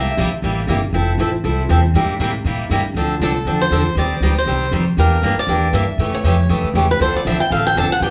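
A bright, boxy picked swing-style acoustic guitar carries the melody, sounding a brief figure at the start and returning at 3.2 seconds, while a warm picked steel-string acoustic guitar accompanies throughout and takes a solo from 3.0 seconds. Underneath, a woody, thumpy pizzicato upright bass on gut strings sits up front with the guitars. This swinging, virtuosic jazz manouche passage, cut from a longer piece, moves from a dominant-seventh opening into a minor-key second section and sits in a moderate club reverb.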